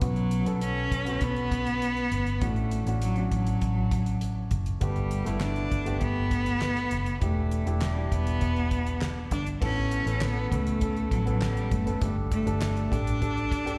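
A straight 4/4 pulse at 100 BPM from a dry, damped 70s drum kit, with its tight kick, fat snare, hi-hat, handclaps and crash, drives this bittersweet piano-led pop passage, cut from a longer piece and tuned slightly below standard pitch. A round, dark, foam-muted vintage electric bass sits low beneath a warm concert grand with deep bass and long sustain, the piano moving through chords such as Bsus2, Dmaj7/A, Gadd9 and Em7 before the harmony shifts to Aadd9 and Gsus2 at 9.6 s. Up front, a single bowed cello carries the melody with a rich, focused tone and vibrato, and the whole performance sounds like a live gig heard through the venue's PA, with small-room and recital-hall reverb.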